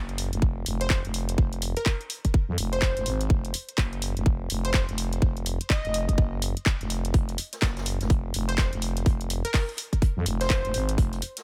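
A swung 125 BPM groove in 4/4 drives this swaggering, bouncy bass house cut, built on a tight, up-front electronic kick and a tape-tinged house kit of handclaps and hi-hat, with a very quiet acoustic brush kit adding hi-hat and snare from 7.1 seconds. Beneath it, a thick, growling FM bass in F phrygian sits close and dry, roughened by overdrive and pumping with sidechain compression. Above, a catchy plucky unison lead of detuned sawtooth with a noise layer, vibrato and a filter sweep glints brightly through lush chorus and delay.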